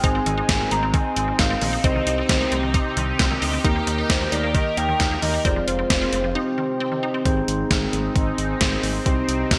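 Synth-pop at 133 BPM in a straight 4/4, nocturnal and melancholic, cut from a longer piece and cycling through Ab, Cm, Eb and Fm in a bright 1980s-style digital production with a lush hall reverb. An up-front, gated 80s drum machine with a thumpy kick and gated-reverb snare plays alongside a smooth gliding synth bass, a mellow tine electric piano and an evolving, resonant pad swell, while a squelchy detuned blip pluck arpeggiates in the background. A hollow, woody clarinet-like lead carries the melody with vibrato, chorus and digital delay until 7.0 s, partway through a brief break that starts at 6.4 s, before the final section begins at 7.3 s.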